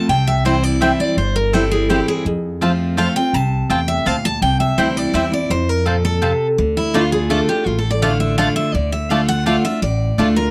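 Lively and rustic, this short bluegrass cut moves at 166 BPM in a straight 3/4, with one picked steel-string acoustic guitar carrying the melody with fresh-string sparkle and audible finger squeak, while a second, full-bodied dreadnought guitar plays the accompaniment. A woody, thumpy pizzicato upright bass holds the low end, and an up-front mandolin with round double strings adds stabs from 0.4 seconds. The dry, close 1970s-style studio sound frames a C and F progression that turns to D minor as a new section arrives at 6.6 seconds.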